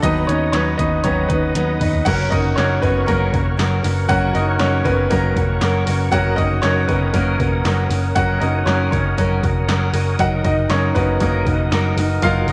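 A bright, woody upright piano leads this hopeful, piano-driven pop excerpt at 118 BPM in F# major, joined by a round, foam-muted electric bass up front, a fingerpicked steel-string acoustic guitar riff with fresh strings, reedy tonewheel organ chords with chorus vibrato and slow rotary speaker in the background, and a punchy, dry analog drum machine with handclaps and toms whose fill at 1.6 seconds leads into a new section at 2.1 seconds, all set in a moderate echo chamber reverb.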